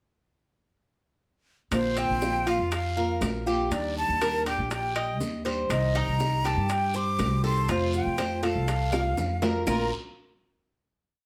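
A sunny, danceable Cuban son and guajira piece in Bb major at 121 BPM opens at 1.7 seconds with a breathy jazz flute playing an expressive motif-based melody with slapback echo, over a fingerpicked nylon-string guitar strumming with muted slaps, a growly, up-front pizzicato upright bass on a syncopated figure, and a bed of percussion: high-tuned bongos in steady eighths, ringing timbales on a shell pattern, woody claves on a two-bar time line, a raspy guiro and grainy maracas. At 2.0 seconds a metallic, double-strung Cuban tres joins with an arpeggiated guajeo as the chords move through Bbadd9, Ebmaj7, Cm and F. A drum fill leads into a final Bbadd9 chord at 9.7 seconds, all set in a moderate studio reverb.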